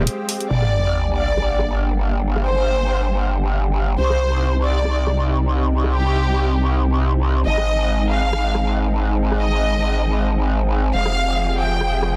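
A half-time 138 BPM groove with a light 16th-note swing drives this heavy, aggressive wobble dubstep passage in G phrygian, its overdriven, layered electronic kit of crash, hi-hat and rim click sitting back in the mix under low-pass filtering. After a brief break, a sub drop impact lands at 0.5 seconds as the up-front growl bass enters, saturated and bright with a wobbling formant-filtered snarl, alongside a close, expressive bowed violin section carrying the melody with vibrato and dub echo. Beneath them a lush, thick detuned sawtooth-and-square pad holds slow-attack chords moving from Gm through Cm and Ab, while a filter sweep runs through the passage inside a dense, heavily limited master with light reverb.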